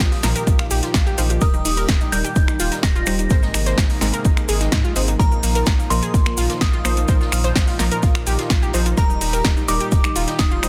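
This excerpt of progressive house opens with everything already in motion: an overdriven electronic kick sits up front, joined by a punchy deep house kit of finger snaps, metallic hats and snare, all carrying the same grit and studio reverb. Beneath them, a saturated sub bass with a thick, mellow triangle tone anchors the straight groove, while a very quiet swinging big-band kit of acoustic hi-hat and snare and a grainy cabasa add natural texture in the background. Chords moving from Bbsus4 through Eb and Abadd9 are held by a smooth, detuned sawtooth pad with a soft attack and long release, pushed back in the mix and pumping against the kick. An analog pluck plays round, chorused arpeggios through a dub echo, and a lush unison pluck adds short sawtooth stabs that also repeat into the echo. On top, a crystalline FM synth bell carries the melody with a vintage, warbling tremolo and tape echo, giving the euphoric, expansive passage its shimmer before the kick drops out at 10.5 seconds.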